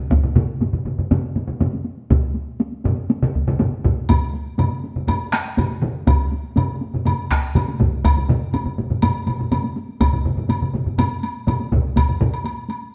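A solo taiko drum struck with heavy sticks sits close and up front in this ceremonial, powerful Japanese traditional taiko ensemble piece, moving at 122 BPM in a straight 4/4. Three taiko ensemble parts accompany it: one played with hard sticks, close and dry; another with heavy sticks in a small room, also up front; and a third with heavy sticks placed in the background of a live room. A woody woodblock joins at 4.1 seconds, and the whole group plays live together in a stone room with a wet reverb, in a brief section cut from a longer performance.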